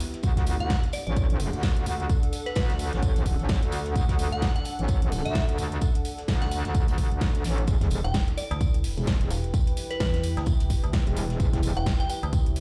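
Gritty and aggressive, this bass house cut from a longer piece drives at 129 BPM in 4/4 with a 58% swing on the sixteenths, moving from D to Em at 7.7 seconds. A punchy, tape-tinged electronic kick sits up front beside a metallic wobble bass that is saturated, compressed and overdriven, with chorus and sidechain pumping. At 8.0 seconds a mellow, digital FM bass with its own overdrive joins it. A big-room dance kit adds a huge snare and metallic hats, while a distant, roomy jazz brush kit with hi-hat, snare and tambourine sits in the background behind high-pass filtering. A glassy, crystalline synth bell carries the melody with tremolo, delay, chorus and vintage 12-bit sampler grit. Underneath, a deep, moody sawtooth pad holds long sustained chords while a warbling, nostalgic lo-fi square-wave pad adds a sustained texture, both washed in chorus and reverb and pumping with sidechain, all set in a large studio reverb, as if played on a big sound system in a bare room.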